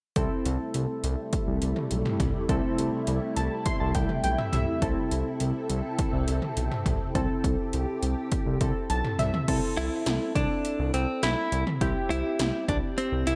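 Bright and upbeat, this synth-pop excerpt moves at 103 BPM in a straight 4/4 in C major, cut from a longer piece. Electronic pad drums sit up front with a punchy kick, metallic hats and a gated snare, with gated reverb on the snare and toms, while a smooth sawtooth-and-square synth bass with vibrato holds the low end. Round, detuned analog keys with a filter sweep and chorus carry the accompaniment throughout, adding fills from 3.1 to 4.8 seconds and again before the change at 9.5 seconds. A silky, mellow string machine sustains soft chords through the phaser and ensemble chorus until 9.5 seconds. At 9.8 seconds a clean, compressed electric guitar recorded direct takes the melody, picked and touched with delay. The whole sits in a moderate concert hall reverb with a softened top end.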